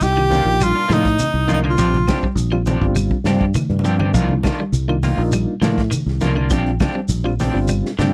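A short cut from a longer afrobeat piece opens at once on a funky, intense groove in C minor at 101 BPM. An edgy, punchy tenor saxophone carries the melody up front with light vibrato and a slapback echo, shadowed very quietly by a breathy, whispered alto saxophone with scooped notes; both horns drop out at 2.2 seconds. Underneath, a bright, twangy electric guitar at the edge of break-up picks arpeggios in the background, a fingered electric bass sits up front, and a crunchy breakbeat kit with a tight kick, dark, gritty saturation and a rolled-off top drives the beat, joined by a grainy shekere. Moments later a reedy electric piano with fast tremolo, woody claves, damped low-tuned congas and a second guitar playing fingered stabs through harmonic tremolo fill out the texture. A drum fill at 3.7 seconds marks the turn as the harmony moves between Cm11 and Bb69. The sound is dry and close, with the feel of a 1970s studio session.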